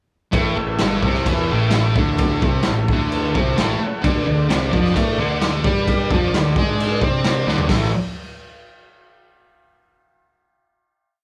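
Starting at 0.3 seconds, a rowdy, swaggering garage rock band at 131 BPM kicks in together in one lightly reverberant room: a thick, double-tracked fuzz guitar plays an octave riff up front, a round, overdriven fingered bass doubles it in driving eighth notes from the background, a buzzy vintage combo organ holds triads with heavy vibrato and slips in a fill at 3.4 seconds, and a gritty, muffled drum kit with a punchy kick pounds out a big groove, while the harmony moves from A to D before a final A chord rings out at 7.7 seconds.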